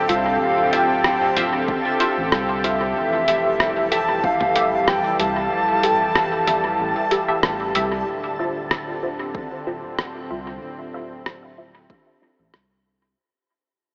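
A dreamy, reverb-soaked mix with the narrow, hazy tone of an AM radio opens this spacious, deep ambient dub excerpt in D minor at 94 BPM, moving from Dm7 to Fmaj9 with a light swing on the sixteenths. A bright, reedy wooden flute carries the melody with vibrato and dub echo until 7.4 seconds, over a smooth, detuned analog pad with chorus and tremolo, a soft, round sub bass touched by tube saturation, a very quiet reversed granular texture, and muted, filtered chord stabs with phaser and echo sitting in the background. A muffled, tape-like sampler drum kit of hi-hat, rim click and toms is joined by a punchy electronic kick in two stretches, and after a break the piece fades out from 8.1 seconds as the chords return to Dm7.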